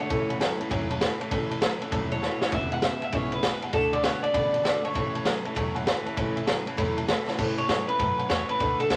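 Rowdy and retro, this rockabilly excerpt swings along at 198 BPM in A major, moving through A, E and D chords. A twangy, slightly broken-up electric guitar through a small old amp carries the melody with a lo-fi bite, while a second bright, compressed electric guitar at the edge of break-up drives a low riff beneath it. Further back, a full-bodied steel-string acoustic guitar with fresh strings and a jangly, boxy tack piano fill out the accompaniment, and a woody, thumpy upright bass with gut strings anchors the low end. The raw garage drum kit sits up front, with a boomy kick, a high-tuned snare, ride and crash cymbals, and a gritty, saturated sound in a pumping small room, adding fills around 2.2 seconds and again at 7.2 seconds. At 7.4 seconds a clean electric guitar solo begins, all beneath a layer of vinyl crackle and moderate studio reverb.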